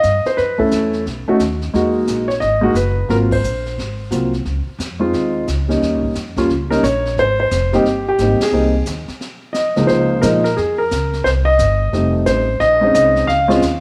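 A grand piano sits up front carrying the melody from the first moment, over a woody, growly pizzicato upright bass and a distant, roomy brushed drum kit with a high-tuned snare and boomy kick, in this relaxed, warm jazz piano trio excerpt swinging at 177 BPM in Ab major, where an echo chamber reverb adds small-room ambience, the band hits accents at 3.3 and 8.4 seconds, and a new section arrives at 9.9 seconds.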